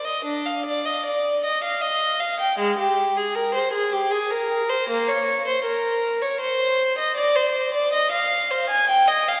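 This is a classical, baroque-style suite movement for unaccompanied violin, a short excerpt cut from a longer piece and lasting 9.4 seconds. Its mood is grave and solemn, set in C minor and in 3/4 at around 78 BPM, with a rubato feel that lets the pulse breathe. A single bowed violin carries everything, ranging from Ab3 up to Ab5 with a period-style, gut-string tone that sounds reedy and warm, colored by light vibrato. The violin sits up front, while a wet concert-hall reverb with a 2.5-second decay is heard from further back in the room, giving the lone line a spacious, resonant halo.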